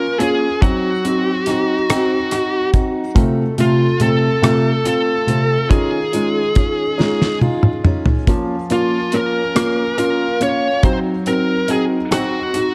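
A fuzz-soaked electric lead guitar carries the melody from the start, over a felt-muted upright piano, soft and mellow with audible action noise, and a fingerpicked steel-string acoustic guitar whose arpeggios bring a little finger squeak. A damped 70s drum kit, dry with a fat snare, tight kick and rolled-off top, joins at 0.2 seconds and sits up front beside the lead, breaking into a fill between 7.0 and 8.3 seconds. This dramatic, melancholic six-eight pop ballad moves through minor and diminished harmonies in a small, lightly reverberant room, cut from a longer piece.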